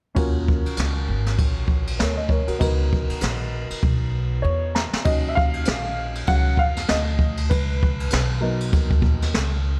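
Smoky, cool jazz-hop in Eb minor at 98 BPM, with a swung 16th-note feel over a two-chord cycle of Ebm9 and Db13sus4. A worn, slightly detuned upright piano sits low in the mix for accompaniment, while a thumpy, gut-strung pizzicato upright bass with a woody tone anchors the bottom. A brushed jazz kit sits up front, with a high-tuned snare, boomy kick, hi-hat and ride, all with a rolled-off top and a small-room ambience. A drum fill arrives at 3.8 seconds and a piano fill at 4.1 seconds, leading into a piano solo from 5.1 seconds to the end of this section of a longer piece.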